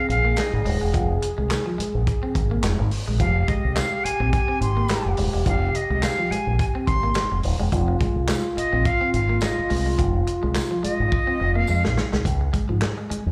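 This hypnotic, cool funk excerpt in F minor moves at 106 BPM with a 16th-note swing. It opens with an airy silver concert flute carrying the melody up front, a breathy, whispered trombone playing a distant second line with light vibrato, and a twangy, slightly broken-up electric guitar riff. Just after, a fingered electric bass, bright and direct through an envelope filter, sits up front beside a dry soul drum kit with a tight kick, medium-tuned snare, hi-hat and handclaps, its top rolled off, while a jingly tambourine stays in the background. Slapback echo colors the flute, trombone and guitar, with analog delay on the flute and spring reverb on the guitar, and the music sounds like a live gig heard through the venue's PA with light club reverb. The harmony rests on Fm7 until a drum fill from 11.1 s leads to a brief change to Db at 12.3 s, where guitar, bass and drums carry on to the close.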